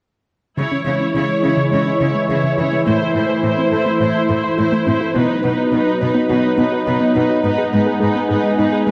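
A sweeping, resonant pad of detuned sawtooth chords leads this vast, relentless cinematic build-up, with a lush, vibrato-rich viola section bowing above an intense cello section, while a glassy, crystalline wavetable pluck arpeggiates with chorus and delay in the background, all set in a moderate scoring-stage reverb with a dark, warm production.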